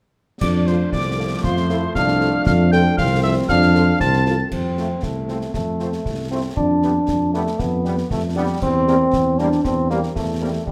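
Spirited and rousing, this excerpt of a military-style wind band march in F major at 117 BPM in 2/4 sets a warm solo cornet melody over a clear, up-front euphonium line and a dark, smooth-topped tuba bass, while a pure, mellow piccolo with vibrato adds a high second line until 4.5 seconds, a punchy trombone section holds sustained chords in the background, a distant, very quiet French horn section joins at 0.7 seconds, and dry, close concert snare, clash cymbals and bass drum drive it all within a recital hall's reverb.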